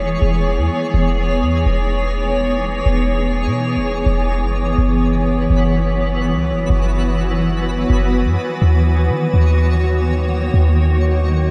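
The clean 808-style bass sits up front with a deep, boomy sine tone, each note striking fast and decaying into a dark low end that anchors this floating, blissful hip hop excerpt at 125 BPM in a half-time feel. Around it, a granular cloud pad holds sustained chords in E lydian, its blurred, evolving triangle tone swelling in slowly and lingering through a long release, also placed near the front. Above the bass, a quieter twinkling granular texture adds a bright, sparkling FM layer with an octave-up shimmer, easing in gently and hanging in the air. All three parts play together from 0.0 to 11.5 s, moving from E6 to F#7sus4 at 4.8 s and settling on D#m7 at 8.6 s. The mix is dreamy and soaked in a huge ambient reverb, and the long tail gives the fragment a suspended, hazy calm.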